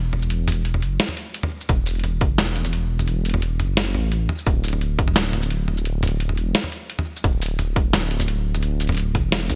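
Half-time drum and bass at 173 BPM in 4/4, spacious and tense, built on a deep, rumbling detuned sawtooth bass with tube saturation up front, a gritty, pitched-down boom bap sampler-style kit of hi-hat, shaker, high-tuned snare and toms, and a hard-clipped, tape-warm electronic kick that appears in short stretches from 1.7 s, all set in a dry, bright 1980s-style digital production.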